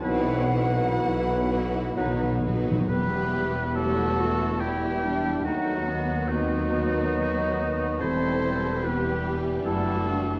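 A solemn, elegiac slow movement for symphony orchestra in 3/4 opens on a suspended chord, with rich, lush violins carrying the melody very quietly under flexible rubato while a hollow, airy silver flute, a clear oboe, a punchy clarinet and a dark, woody second violin section weave second lines around it. Beneath them, an intense viola section and mellow, distant French horns fill the middle, joined by very quiet trombones holding sustained chords, while focused cellos and smooth, even double basses anchor the bass. In the opening seconds, a softly voiced bassoon, a dark trumpet section playing stabs and a present tuba add weight before dropping out by 2.8 seconds. Timpani struck with hard mallets on calf heads enter at 2.0 seconds with a fill that leads into the second section, where the harmony settles into E minor and moves through a dominant seventh before returning home. The whole sounds bathed in a wet scoring-stage reverb and colored by worn, warbling cassette tape with a wavering pitch drift, as if heard from an old recording of a longer work.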